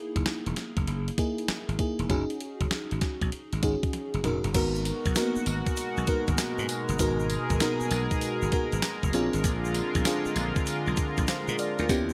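A lush, dreamy FM electric piano opens this confident new jack swing excerpt in G# minor at 98 BPM, swung on the 16ths, and is quickly joined by a crisp, overdriven 8-bit drum machine with a thumpy kick and fat snare punching up front alongside growly slap bass, over chords from F#13 to A#7, with a fill at 3.9 seconds leading to a grainy tube shaker at 4.5 seconds and a shimmering chorused pulse-width pad at 4.8 seconds.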